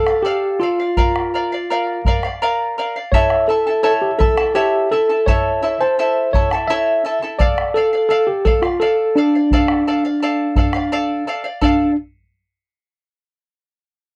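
A tine electric piano carries the melody from the first moment, its clean tone heard through built-in speakers, over the shimmering, bright fingerpicked double strings of a charango, with a deep, dark acoustic bombo arriving at 0.1 seconds. This earthy, festive Andean folk piece in D minor moves in 3/4 at 85 BPM and gradually speeds up, passing through D minor, B-flat and A before returning to D minor at 7.4 seconds. All three parts sit up front in a dry, close 1970s-style studio sound, with a new section arriving at 11.6 seconds as this portion of a longer piece is cut off.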